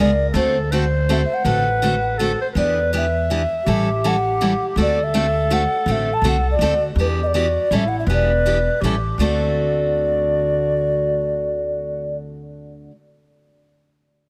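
This lively, swinging stretch of acoustic string swing in a lilting three-beat metre opens with all four parts sounding together, cut from a longer piece. A mellow alto ocarina carries the melody with a pure, clay-bodied tone, soft attack and vibrato, set back at a distance. Beneath it a growling clarinet plays a second line, its subtoned, raspy voice adding gritty, scooped notes in a jazz style, heard roomy and far off. Up front, a picked steel-string acoustic guitar supplies bright, fresh-stringed accompaniment, while an upright bass plucked on gut strings gives a woody, thumpy foundation. Light reverb surrounds the ensemble as the harmony moves through D7, Em7 and A7 changes, and the ocarina and clarinet stop at 12.2 seconds, leaving guitar and bass to ring on until 12.9 seconds.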